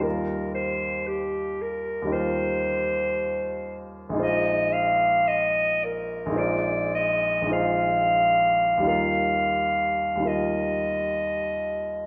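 A bright clarinet, distant and roomy yet up front as the solo voice, carries the melody over clear, natural grand piano accompaniment from the very start of this dreamy, luminous impressionist classical duo in Eb major. The music moves in a slow, rubato 4/4 at 42-60 BPM, with the harmony drifting from Eb69 at 0.0 seconds to Bb11 at 4.2 and Ebadd9 at 8.9. A wet recital hall reverb with a 1.5-second decay surrounds this brief excerpt from a longer piece.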